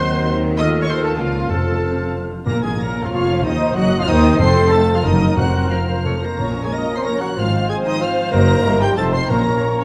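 A symphonic violin section carries the melody high above the orchestra, its bowed tone smooth and lush with even vibrato, in this stormy, dramatic fragment of a fast romantic movement in triple time with a flexible, rubato feel. Beneath it, a flute section adds a pure, tongued second line, a clarinet sings in the background, and a distant, roomy oboe appears only in brief phrases, from 0.0 to 2.1 seconds and again around 5.7 seconds. A second violin section and a dark, soft-edged viola section fill out the middle, while mellow French horns and clear, present trombones hold very quiet sustained chords and a trumpet section punctuates with soft, tight stabs. A rich, focused cello section and woody double basses anchor the bass, and a bright, ringing concert harp very quietly traces arpeggios. Timpani enter at 1.5 seconds and return near the close, as harmonies darkened by diminished and dominant chords drive toward a minor resolution, all set in a dark production with a wet recital hall reverb.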